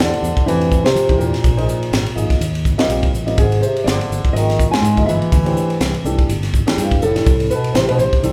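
This short clip of bright, funky electric jazz fusion, cut from a longer piece, opens with the full band playing live together in one large studio room. A nylon-string guitar carries the melody with a full-bodied, thumb-plucked, deep classical tone, while a mellow bass clarinet adds a second line from further back, roomy and distant, with light vibrato, soft attacks and scooped notes in a jazz style. The grand piano accompaniment sounds dark, worn and intimate, its action noise audible beneath the harmony, and the fingered electric bass comes through warm and direct. Up front, the crisp drum kit has a punchy kick, a high-tuned snare and dusky hi-hat and ride cymbals in an airy, polished sound, with the groove swung on 16ths. The chords move from Fmaj9 through Bb5, Eb69 and Abmaj13 to Dsus2, G9 and C69 before the clip breaks off at 8.3 s.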